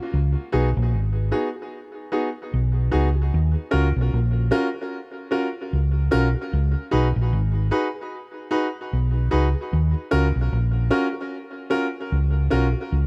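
A rough home demo sound with little reverb puts both instruments close and dry in this brief fragment of a longer lovers rock reggae piece. The tempo sits at a relaxed 75 BPM in 4/4 with a gentle swing on the sixteenths, and the key of Eb minor gives it a bittersweet, longing mood. A hollow-body short-scale electric bass, played with the fingers, carries the low end with a dark, round, amped tone that sits up front and a little louder than the piano. A clear grand piano supplies the accompaniment with a natural, short-sustained touch, colored by tape echo. The harmony alternates between Db9sus4 and a rootless Ebm7, with changes arriving at 3.3, 6.5 and 9.7 seconds, before the piano stops at 12.8 seconds and the bass rings on briefly to the close.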